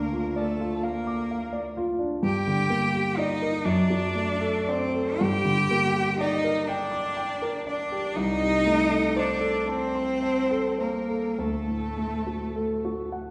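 A piano trio opens together in this slow, yearning and elegiac romantic movement in G minor, its 6/8 pulse moving freely with rubato at roughly 34-43 BPM in dotted quarters. The bowed violin carries the melody with a focused, vibrato-rich tone and a smooth top, while the bright, up-front cello sings a second line beneath it. A dark, mellow concert grand with deep bass and short sustain accompanies them until about 13.3 seconds, all placed in a reverberant recital hall heard from further back in the room, in a brief fragment cut from a longer piece.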